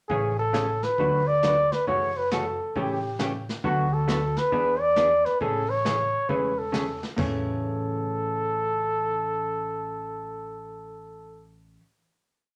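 From the start, a bucket-muted trumpet sings a veiled, lightly vibratoed melody of song-like phrases up front, over a clean hollow-body electric guitar picking four to the bar, a woody, thumpy upright bass playing two-beat root and fifth, and brushed drums sweeping the snare until 7.5 seconds, giving this playful western swing piece a lilting bounce before it settles on a final chord.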